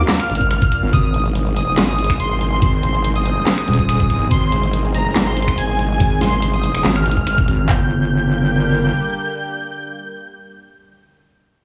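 A heavy wobble dubstep drop hits at once: a soft, smooth supersaw carries the high melody with digital delay, above a lush, detuned unison pad holding sustained chords that pump under sidechain, with chorus and phaser adding shimmer. A nasal vowel-sweep wobble bass, resonant and saturated, growls beneath from the start, soon joined by a second heavy, square-edged wobble bass that sits up front with overdrive and chorus. Layered electronic drums drive the half-time groove with a slight swing: a knocking kick, a huge snare, handclaps, finger snaps and hi-hat, all in studio reverb. The mood is chaotic and aggressive as the harmony moves from G minor to A-flat and back to G minor at 7.7 seconds. By 8.9 seconds the drums and both basses have stopped, leaving the evolving supersaw and the bright pad to ring out until the cut at 11.0 seconds.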